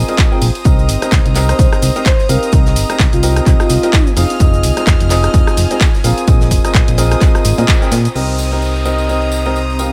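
A clear concert grand piano riff, roughened by vintage 12-bit sampler grit, low-pass filtering, digital delay and sidechain pumping, drives this bittersweet, soulful piano house excerpt in C minor at 128 BPM with a swung 16th feel. Beneath it sit a punchy, up-front electronic kick, a round, dark FM bass, earthy bowed violin chords with light vibrato, tape-warm house drums of handclaps, hi-hat, rim click and shaker, a very quiet tambourine and a faint acoustic kit of hi-hat and snare. A breathy flute-like synth lead sings from 1.5 to 4.1 seconds, then a band accent at 7.7 seconds and an electronic downlifter from 8.2 seconds usher in a deep, moody ambient pad in the closing moments.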